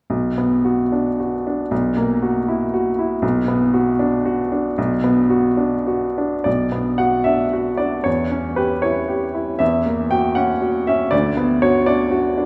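Romantic classical character piece for solo piano in 6/8 with supple rubato, this bittersweet, brooding fragment from a longer work features a bright, woody upright piano placed up front with short sustain, its polished tone blooming into a wet church reverb as the harmony moves from B minor through F#7 and a diminished chord before settling on Bm/D at 11.1 seconds.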